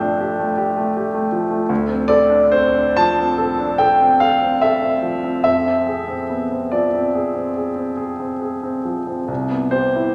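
A clear concert grand sits up front in a wet concert hall, its long sustain blooming into a 2.1-second reverb tail while audible action noise keeps the sound intimate. This serene, dreamy impressionist solo piano passage drifts in 9/8 at a slow 42-55 BPM with free rubato, spanning deep bass notes down to G1 and reaching up to A5. Cut from a longer piece, the 10.1-second fragment moves through G9sus4, Dm7 and Fm6 before settling on Cmaj7 at 9.3 seconds.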